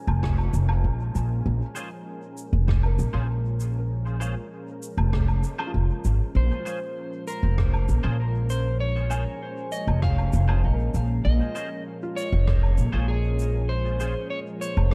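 A woody, thumpy upright bass sits up front in this meditative ambient dub piece in Bb minor, played pizzicato on steel strings at 98 BPM in a straight 4/4. Behind it, a smooth, detuned sawtooth pad fades in on sustained Bbm7 chords with a soft attack and chorus. A felt-muted upright piano, mellow and intimate with audible action noise, traces arpeggios through dub echo in the background. A deep, layered electronic kick and a natural-sounding kit of woodblock, rim click and shaker, the latter carrying dub echo, give the groove its pulse, with the kick dropping out at 12.6 seconds. A bright, compressed, twangy electric guitar adds clean picked stabs through ensemble chorus and dub echo from 1.8 seconds, and at 6.4 seconds a slightly broken-up slide guitar carries the melody through dub echo. Dark studio reverb gives the whole passage, cut from a longer piece, a deep, hazy depth.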